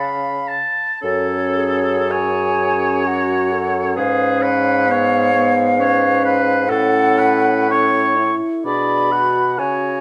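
A hollow, airy silver flute carries the melody from 1.0 s, singing with vibrato and clearly tongued notes in its upper register over a slow, yearning movement for wind quintet. The piece is in F# minor and 3/4, moving at a rubato pace of roughly 53-67 BPM with a solemn, classical character. From the opening, a warm oboe with vibrato sits up front as a second line. A clarinet plays accompaniment in the background, and a soft-attacked bassoon with light vibrato anchors the bass. A vintage-toned French horn, also lightly vibrato, joins the accompaniment at 1.0 s. The harmony moves from C# to F# minor and on through C#7/G# and F#m/A to G#m7b5/B, all heard in a moderate recital-hall reverb in this excerpt from a longer piece.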